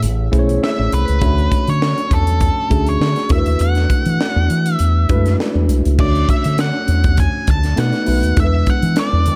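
Polished 1980s jazz-funk pop with an urban, slick mood, moving at 100 BPM in 4/4 with a light swing on the sixteenths, drawn from a longer piece. A mellow, slightly out-of-tune tine electric piano with lush chorus lays down chords from Amaj7 through Dmaj7 and E9sus4, while an up-front fingered bass with an envelope filter and a crisp fusion kit, featuring a high-tuned snare, punchy kick and gated reverb in a pumping small room, drive the groove. From 0.6 seconds a dark, fuzzy octave-fuzz lead guitar carries the melody, and at 6.0 seconds the harmony turns toward Dmaj7, B7 and E7.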